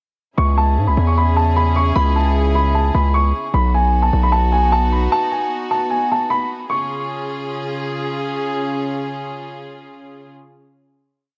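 Echo-heavy and lightly reverberant in a small room, this short, menacing and melancholic half-time trap piece sets a dark, boxy baby grand piano looping an upper-register melody through a low-pass filter and analog delay over a gut-string studio string section holding smooth bowed chords, while a punchy 808-style bass with a noise layer drives long sub-bass notes with pitch slides until 5.1 s, the piano drops out at 7.8 s, and the strings sustain alone on a final C# chord until 10.3 s.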